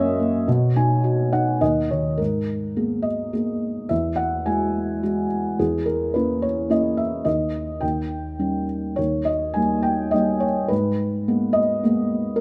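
A felt-muted upright piano carries this short classical fragment alone, its thick felt giving the tone a dark, intimate softness that sits up front in the sound. The mood is cool and bittersweet, unfolding in a lyrical 3/4 with a rubato feel that lets the phrasing breathe freely. A brief opening passage holds a felt piano fill from 0.5 seconds, and the second section begins at 2.2 seconds. The harmony moves through colored chords such as Badd9, G#madd9, Eadd9 and a diminished chord over E, then leans on D#7 before settling back on G#madd9 at 10.7 seconds. Close, detailed microphones and a light reverb keep the mellow instrument natural and near, in a passage cut from a longer piece.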